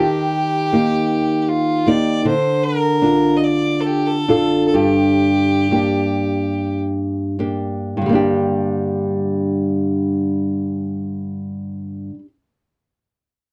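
This Celtic folk slow air in G minor drifts in a rubato 3/4 between 46 and 80 BPM, with a longing, mournful mood and a stretch that slows down from 2.2 to 8.0 seconds. A single bowed fiddle carries the melody with a clear, nasal tone and light vibrato until 6.8 seconds, while a small, fingerpicked nylon-string guitar plays the accompaniment through Eb, Dm and Gm and continues alone to 12.3 seconds. Light reverb sits over a dark, warm production in this excerpt from a longer piece.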